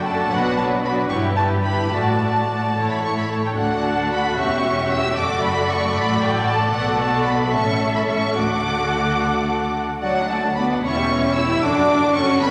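Graceful and spirited, this short passage cut from a longer classical-period movement for string orchestra moves in 6/8 at roughly 71-78 dotted-quarter beats per minute, with a flexible, rubato feel in D major. Two violin sections sit up front for the full 12.5 seconds: one carries the melody high in its range with smooth, even vibrato tone, while the other sings a second line beneath it with a soft attack and expressive shading. Violas fill in the accompaniment with a lush, even sound, and cellos and double basses anchor the bass, the cellos focused and close, the basses adding a smooth-topped depth at a lower level. The harmony moves through B minor, E minor and D major chords, touching diminished colour on C# before settling back toward D, and the opening phrase returns at 10.0 seconds. A wet concert hall reverb with a long tail surrounds the ensemble, giving the rich, bowed strings an airy spaciousness.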